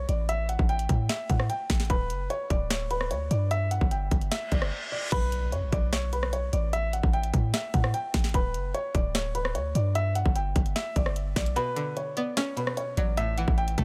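Half-time trap drums with a hard-clipped kick, sharp snare and bright hats drive this brooding, menacing hip hop excerpt. A dark, intimate baby grand piano with audible action noise carries the melody over a deep, boomy 808-style bass, and a reverse cymbal leads into an electronic impact at 5.1 seconds. A twangy, chorused string-like resonator pluck enters at 11.6 seconds as the kick briefly drops out, all within a dry, close-sounding mix.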